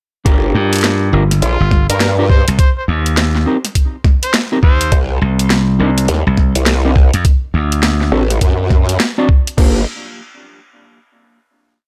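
A funky, gritty glitch hop piece in G minor at 103 BPM, swung on the 16ths, opens at 0.3 s straight into the drop: a thumpy, compressed, pitched-down electronic kick sits up front beside an overdriven drum kit with a cracking snare, bright hats and crashes in a swung beat with edits. An aggressive, growling bass wobbles at changing speeds while a punchy slap bass chops out phrases answering it. A dark, clean electric guitar adds syncopated, close-voiced chord stabs with sidechain pumping and tape echo, and from 1.4 s a clear trumpet with light vibrato plays short jazz-style answering phrases as the dry, loud mix moves through Gm7, Eb5, Cm and D before landing on a final Gm7 chord at 9.6 s.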